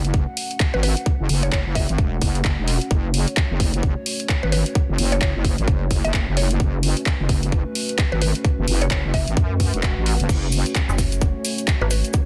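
Gritty and swaggering, this bass house excerpt moves at 130 BPM in F# minor with a 16th-note swing, built on a tight, up-front electronic kick and a house kit of crash, handclaps and hi-hat in a small room, while a heavy, detuned wobble bass with overdrive and chorus pumps against a deep, moody analog pad holding sustained chords. A woody, round mallet-like synth pluck carries the melody in the background through dub echo, and a faint electronic swell at 9.5 seconds leads to a grainy cabasa from 10.3 seconds. At 10.9 seconds the wobble bass gives way to a metallic FM bass with tube saturation, all set in a digital ambience and a dense, heavily limited modern master.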